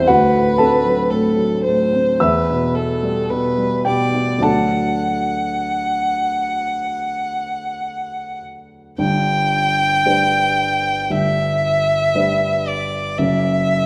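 Bathed in the lush reverb of a scoring stage, this serene romantic classical excerpt in G major drifts with rubato at around 51-59 BPM, as a rich, smooth violin with vibrato sings the melody up front over a dark, mellow grand piano whose intimate, vintage tone carries audible action noise, the harmony settling onto G at 9.0 seconds.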